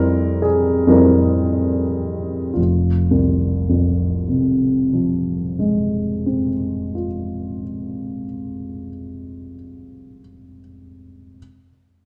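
A woody, polished upright piano sits up front as the only voice in this brooding, bittersweet romantic character piece in F minor, played in a slow 6/8 at roughly 33-46 BPM counted in dotted quarters. The playing is freely rubato, and the opening phrase slows down over its first 2.6 seconds, resting on a C7 over an F bass before settling onto F minor at that point. The range stretches from deep F1 in the bass up to Bb4, giving the instrument a present, full-bodied sound. A recital hall reverb with a 1.6-second decay surrounds the piano, and the dark production adds to the introspective mood. Tuned slightly high at A4 = 441 Hz, this short excerpt of about 11.4 seconds is cut from a longer piece.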